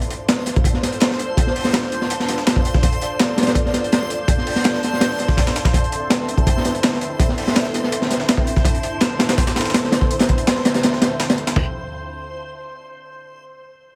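Frenetic and dark, this drum and bass cut in the jungle style runs at 165 BPM in straight 4/4, set in D minor and taken from a longer piece. Up front sits a crunchy, saturated breakbeat kit with a punchy kick, a high-tuned snare, toms, hi-hat and crash cymbals whose rolled-off top keeps them dusky and smooth. Underneath it, a second, sampler-style break of pitched-up hi-hat and snare adds a compressed, tape-warm grit, with high-pass filters thinning both its hats and snare. A soft string machine holds silky, mellow chords from D3 to D5, shimmering through phaser and ensemble chorus as the harmony moves from Dm7 to Am/D at 5.7 seconds and back to Dm7 at 11.6 seconds. Entering at 0.4 seconds, a reversed, detuned texture swells dreamily between C5 and C6, bright and granular in its own reverb, while the whole mix sits in light, small-room ambience.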